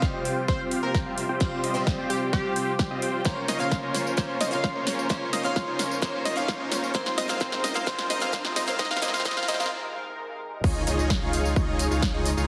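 Festival progressive house in F minor at 130 BPM, euphoric and emotional, this cut from a longer piece builds over a filter-swept, up-front supersaw riff, a punchy catchy unison lead with tape echo, a bright, boxy picked swing-style acoustic guitar in the background, a lush, airy pad with chorus and phaser, and layered big-room drums with metallic hats and an overdriven electronic kick, while a very quiet riser creeps in from 6.6 seconds. The chords move from Fsus2 through Bbmadd9 and Ab, and after a brief break at 9.7 seconds the drop lands at 10.6 seconds on Dbadd9 with an impact and a deep, saturated sub bass pumping under the sidechained parts. The whole mix has a heavily compressed radio sound set in a moderate recital-hall reverb.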